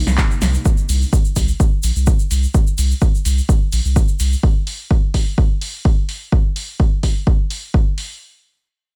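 Acid house at 127 BPM, raw and playful and cut from a longer piece: an up-front punchy electronic kick runs to 7.8 s beneath an analog drum machine's claps, hi-hat and snare, a grainy tube shaker and a faint, gritty acoustic indie kit, while a deep, saturated sine sub bass pumps with the sidechain under a filter sweep until 4.4 s and a mellow, detuned sawtooth pad with chorus holds a brief opening chord, in a dry, close mix.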